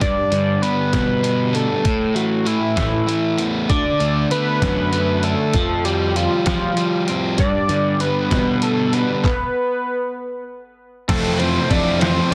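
A slow, straight 6/8 pulse at 65 BPM carries this wistful, jangly indie rock fragment, where gritty, pitched-down trip hop sampler drums with a thumpy kick, handclaps and cymbals sit up front beside a bright, crunchy overdriven guitar riff, a fuzzed picked bass and a fat, warbling, detuned analog lead melody with chorus and vibrato over a G, Asus2, D and Fsus2 progression, before a stop at 9.2 s gives way at 11.1 s to a Fmaj7 colored by a dark, slightly broken-up background guitar and a very quiet, shimmering pulse-width pad, all under light reverb and a heavily compressed radio-like sound.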